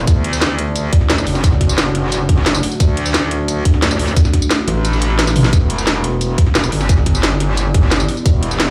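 A straight, driving 4/4 groove in dark, futuristic technical drum and bass, built on a tight, up-front electronic kick and a layered kit of cracking snare, metallic hi-hats, tambourine and toms, all carrying a small-room character before a large studio reverb on a big system. A saturated, aggressive FM wobble bass snarls up front with chorus and sidechain pumping, while a deep, detuned sawtooth pad with a sub octave holds sustained chords far behind it, moving from D to Em7 at 5.5 seconds. The kick drops out at 4.8 seconds, a drum fill lands at 5.3 seconds, and the kick returns at 5.5 seconds, in this short cut from a longer piece.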